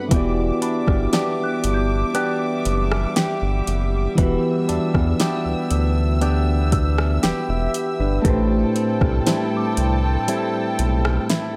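This moody, late-night contemporary R&B excerpt opens with electric-piano-like synth keys, a rich studio string section holding sustained chords, and a clean, direct-recorded electric guitar playing twangy arpeggios through harmonic tremolo and tape echo. At 0.1 seconds a deep analog bass and a smooth, produced R&B drum kit arrive, both up front, with the kit offering a soft kick, fat snare, rim click and metallic hats re-recorded in a large room. The keys carry a chorus effect and a filter sweep over a dark, full-bodied tone, while the bowed strings sound even and lush with vibrato. From 0.6 seconds a small celesta adds delicate, bell-like notes with tape echo in the background. The harmony shifts from Em7 to Am7 at 8.2 seconds over a straight 4/4 feel, and the whole mix has a dry, gritty hardware sound with transformer saturation.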